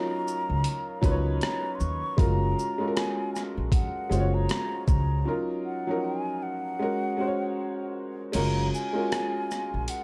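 Dreamy and nostalgic, this lo-fi hip hop cut moves at a relaxed 78 BPM in 4/4 with a swung sixteenth-note feel, centred in F# major. A hollow, airy concert flute carries the melody with vibrato and tongued notes, its mellow tone trailed by tape echo and sitting softly behind the other parts. Underneath, a clear, slightly detuned upright piano gives boxy, long-sustaining accompaniment with a cassette-tape colour, moving through D#m7 and F#maj7 chords. A compressed, gritty, sampler-style boom bap drum kit, re-recorded in a large room, comes in at 0.3 seconds with a thumpy kick, hi-hat, rim click, shaker and crash cymbal, joined by a woody pizzicato upright bass on steel strings that stays up front. A break arrives at 5.3 seconds, and from 8.3 seconds the music shifts into a new section where the kick drops out, all under a light reverb in this fragment cut from a longer piece.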